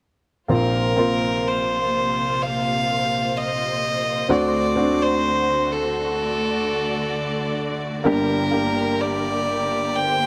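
This pop excerpt moves at a slow 64 BPM in straight 4/4, in Bb major, with an emotional, tender mood. A single bowed fiddle carries the melody from 0.5 to 10.3 seconds, its gut-string tone reedy and up front yet touched with a distant quality. Beneath it, a clear, polished baby grand piano plays the accompaniment in a present, forward position, ranging down into its low register. A lush studio string section holds sustained chords, its smooth, even vibrato sitting further back in the mix. The harmony passes from Bbsus2 to D7 and settles on Gm at 8.1 seconds, all wrapped in light reverb.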